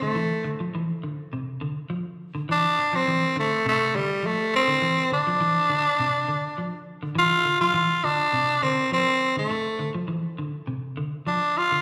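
A straight 4/4 afrobeat groove carries this defiant, funky excerpt from a live club gig, heard through the venue's PA with a roomy plate reverb around it. Up front, a raspy tenor saxophone plays the lead melody solo with a gritty, punchy, vibrato-laced pop edge and a slapback echo. Beneath it, a clean, dark electric guitar plays picked arpeggios on a single Dm9 chord, colored by subtle chorus and its own slapback echo.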